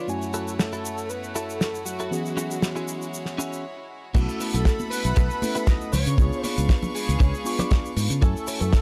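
A straight 4/4 groove drives this groovy, feel-good nu-disco excerpt, carried by a damped 70s drum kit whose dry, medium-tuned snare, hi-hat, shaker and crash sit with a rolled-off top. A thick, detuned unison lead of sawtooth and triangle with a sub octave sings the melody with vibrato, bathed in lush chorus and dub echo. Beneath it, a mellow, reedy electric piano heard through its built-in speakers and a bright, earthy chamber violin section holding bowed chords both pump with sidechain, while a direct-recorded clean electric guitar plays a picked, compressed, scooped riff with chorus. At 4.1 seconds a tight, up-front acoustic kick and a growly fingered electric bass enter together, just ahead of the drop at 4.2 seconds, with bongos and congas joining in the background at 4.5 seconds. The chords shift from F#m7 through E69 and B7sus4 to C#7b9 before returning to F#m7, all within an ambient studio space.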